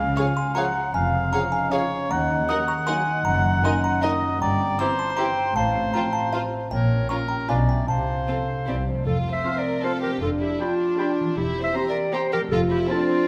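A delicate, tinkling music box carries the melody until 8.8 s in this playful, mischievous cinematic cue in 3/4 at 156 BPM, settling into F major from 4.4 s, with a bright oboe and an airy, hollow flute tracing second lines. A ringing concert harp plays arpeggios, and a tight French horn section holds sustained chords. Sul tasto strings fill out the texture: a dark violin section sits in the background on melody, a clear violin section plays a floating second line, rich violas also sit in the background, and cellos in the background join double basses for the bass foundation. An up-front clarinet joins with its own line at 8.3 s, all set in the reverb of a scoring stage.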